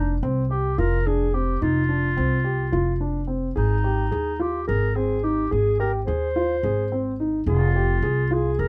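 Set in a lopsided 7/8 with a straight feel, this short contemporary chamber piece moves with an urgent, hypnotic pull, and it is cut from a longer work. A clarinet in classical style carries the melody throughout the 8.7 seconds, its tone distant and roomy even as it sits up front. Beneath it, a dark grand piano spins mellow, intimate arpeggios, its smooth, vintage character touched by audible action noise. An upright bass played pizzicato on steel strings anchors the low end with a woody sound. The harmony moves from an open F fifth to A-flat when a new section begins at 3.6 seconds, settling on F minor near the close, all framed by light reverb in a dark, warm production.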